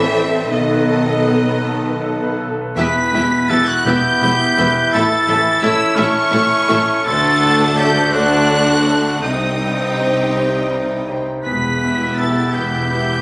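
Captured on a phone in a reverberant room with a faint mains hum beneath it, this cut from a longer piece is a longing, sorrowful cinematic film score in a slow, rubato 6/8 at 52-58 BPM. A lush, vibrato-rich violin section carries the melody high above a second violin line, with violas and a brilliant grand piano in the background, distant French horns holding sustained chords, and a biting double bass section and very quiet cellos underneath. A pure, hollow flute section touches a second line only until 2.4 s, and a present solo oboe takes up a second line from 2.8 s as the harmony moves from E minor through A and D to a dark C minor.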